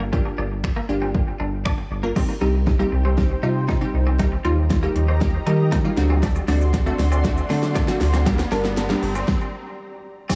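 Dance-pop at 118 BPM in C dorian, a confident, energetic excerpt from a longer piece, where a round, dark analog bass with sidechain pumping and a punchy, overdriven deep house kit of kick, fat snare, hi-hat, shaker, finger snaps and crash sit up front beneath a crisp, wave-folded wavetable chord stab carrying tape echo. A twangy, clean twelve-string electric guitar riff with analog chorus and tape echo runs throughout, while a lush, thick detuned pad with chorus and pumping enters at 2.6 seconds as the harmony moves from Gm7 through Cm and D7 back to Gm. A build-up with a long drum fill runs from 2.2 seconds, joined by a riser and downlifter in the background from 5.4 seconds. The bass drops out at 9.2 seconds for a brief stop, and the whole sits in an echo-heavy mix with light reverb.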